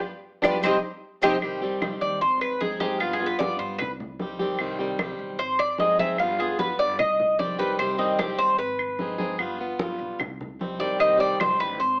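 Latin Cuban son in a guajira vein at 150 BPM in C harmonic minor, this nostalgic, danceable excerpt opens with a band accent in which a bright, metallic Cuban tres melody and a background flamenco guitar with finger squeak and slapback echo stop at 1.4 s, just after grainy maracas fall away at 1.3 s. A second up-front tres then takes the solo in double-string arpeggios over a boxy, picked swing-style plugged-in acoustic guitar, a dark, thumpy pizzicato upright bass on gut strings, woody claves and thick-skinned congas, cycling through Cm, Ab and G7 under moderate studio reverb and an AM radio sound.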